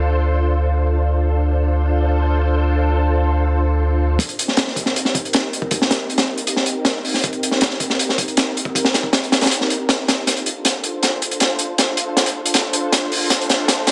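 A silky, warbling string machine holds Dm7 chords through ensemble chorus over a deep, round dub sub bass in this frenetic, raw drum and bass and jungle cut at 158 BPM in C dorian; at 4.2 s the bass drops away as a gritty, punchy, up-front breakbeat kit with a high-tuned snare enters over Cm7 and a filter sweep on the strings builds tension, leading to a drum fill from 10.3 s as the harmony returns to Dm7, all in a small room with light reverb and a rolled-off top.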